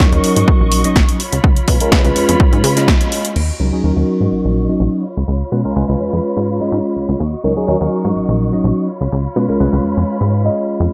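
A filtered disco house groove in Eb minor at 125 BPM opens with an overdriven, punchy electronic kick and analog drum machine snare, hi-hat and crash driving a lightly swung 4/4 beat, while a clean, up-front tine electric piano with phaser and a plucky, wave-folded analog bass with tube saturation pump beneath a low-pass filter. Lush, bowed symphonic strings with a soft attack and vibrato sustain chords over the Ebm7 to Db7 changes, lending a nostalgic, funky mood. After a band accent at 2.9 seconds the drums drop out by 3.5 seconds, leaving the filtered keys, bass and strings to carry this cut from a longer track in light reverb.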